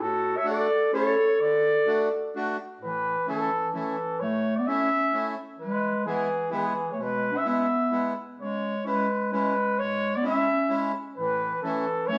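A live band in one large studio room is bathed in a lush reverb, giving this bouncy, festive alpine folk dance in A major a roomy glow at 129 BPM in a straight 3/4 lilt. A mellow, punchy trumpet carries the classical-style melody up front, sounding distant and roomy, while a warm clarinet traces a second line beneath it with the same spacious, far-off quality. A reedy, airy accordion supplies the accompaniment further back, and the piece opens with a short phrase before settling into a longer passage from 2.8 s.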